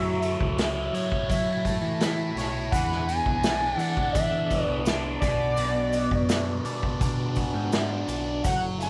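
Psychedelic rock at 84 BPM with a trippy, hypnotic pull, built over F#m7, E7 and Bm chords: a screaming, ring-modulated synth lead carries the melody through distortion, chorus and tape echo, a bright, double-tracked fuzz guitar grinds out a phased riff, a growling picked bass adds overdriven weight, and a punchy vintage drum kit with a pumping room sound enters at 0.2 seconds alongside a grainy, distant tube shaker, while a piping tonewheel organ holds sustained chords through a fast rotary speaker in the background, all set in a small room with light reverb.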